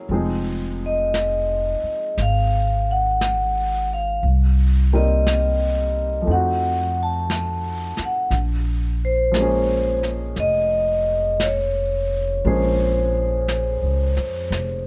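A slow, intimate jazz ballad in B-flat minor at 58 BPM with a gentle swing, carrying a smoky late-night mood through chords moving from Fm7 to Cm7, F7b9 and Bbm9. A ringing, metallic vibraphone with the motor off carries the melody from 0.9 seconds, sitting up front beside a woody, thumpy pizzicato upright bass on gut strings, while a clear upright piano with audible action noise comps beneath. Soft brushes on an airy small-room kit keep time on snare and hi-hat before a brief drum fill at 14.5 seconds, all captured closely and in detail with little reverb in this fragment of a longer piece.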